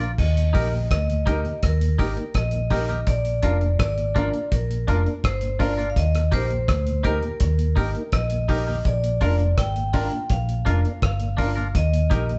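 Recorded live in one room, with a moderate stone-room reverb and a softened, treble-trimmed sound, this sunny, uplifting roots reggae passage alternates between two chords as a bright vibraphone struck with hard mallets rings out the metallic melody. A round, foam-muted fingered electric bass and a thuddy, cloth-damped drum kit with a tight kick, hi-hat, rim clicks and dark crashes sit up front. A twangy, clean picked electric guitar with a warbly pitch drift, a mellow tonewheel organ turning on a slow rotary speaker with chorus vibrato and tape echo in the background, and a woody upright piano entering with stabs at 0.5 s fill out the groove.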